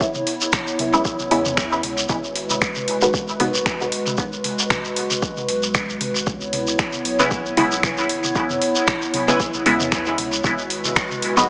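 A warbly, tape-like pad opens this hazy, deep dub techno piece in C# minor at 115 BPM together with an overdriven kick, a smooth sine sub bass in the background and a grainy, close shekere, the pad's dark, chorused chords pumping along with the kick. An up-front analog drum machine adds finger snaps and hi-hat soaked in dub echo over dry electronic toms, all over a lightly swung C#m7 to G#m7 progression. A muted, detuned dub chord stab with phaser enters at 0.9 s, drops out at 3.7 s and returns at 7.2 s with nostalgic lo-fi synth keys playing a phased riff, while lush hall reverb, vinyl crackle and a small-speaker sound give the excerpt a faded feel.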